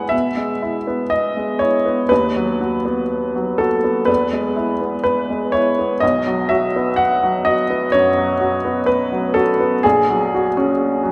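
A woody, intimate upright piano sits up front with audible action noise and long sustain in this hopeful, warm romantic character piece for solo piano in E major, moving in a rubato 4/4 at 59-66 BPM through chords from E to B/D# and on to F#/A#, all bathed in a concert hall reverb with a 2.5 s tail in a fragment cut from a longer work.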